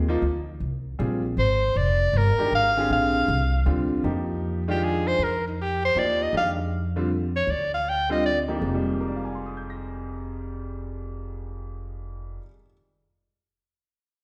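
Spiritual and intense, this short excerpt of modal jazz swings in 3/4 at 157 BPM, moving between Fm9 and Bb/F in F dorian. A bright upright piano with a polished, long-sustaining tone carries the accompaniment across its range from the start, beside a woody pizzicato upright bass with steel strings that holds the low end up front. The breathy soprano saxophone enters at 1.4 seconds with a clear, whispered, intimate voice, soft attacks, scooped notes and vibrato, and it takes a solo from 4.0 to 8.6 seconds before dropping out. The saxophone sits loudest in the mix, with piano and bass close and present behind it. The recording carries a lush recital hall reverb of a church or concert hall, giving the trio a resonant, devotional space.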